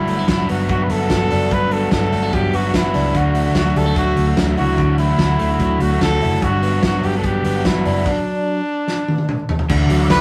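Breezy and nostalgic, this short fragment of jangly indie pop moves at 147 BPM in a straight 4/4, with a close-miked trumpet carrying the melody up front with vibrato over Gmaj7 and Dadd9 chords, joined by an overdriven garage guitar, a bright, compressed clean electric guitar picking arpeggios, a dark, round foam-muted bass and a loose drum kit with a fat snare and tight kick. Around 8.1 seconds the band hits a stop, and the drums play a fill leading into the return of Dadd9, where a lush, detuned pad with chorus and phaser slips in at 9.8 seconds and a very quiet, ringing vibraphone adds a single high note at 10.1 seconds. The rough rehearsal-room sound carries moderate reverb and a layer of vinyl crackle.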